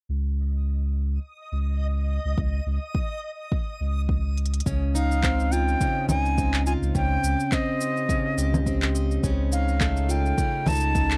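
Folktronica at 105 BPM in 4/4 with a light swing on the sixteenths, set in Db lydian and carrying a playful, warm mood through this short cut from a longer piece. A round, sine-like sub bass holds Db2 from the first moment, sitting deep and mellow under a dreamy, reversed swelling texture that shimmers with detuned, granular tones and its own reverb between 1.3 and 4.7 seconds. An electronic kick arrives at 2.4 seconds with a deep, tape-softened thump, and a drum fill at 4.4 seconds brings in a filtered organic kit of cabasa, congas, handclaps and smooth hi-hats, re-recorded in a large room. At 4.7 seconds a bright, octave-doubled twelve-string acoustic guitar begins picking arpeggios through tape echo, joined moments later by an airy silver flute melody with gentle vibrato, also touched by tape echo. The harmony moves from Dbsus2 to Dbmaj9, then Eb7/Db and F7/Db over the held bass note, and the dry, close sound recalls a 1970s studio.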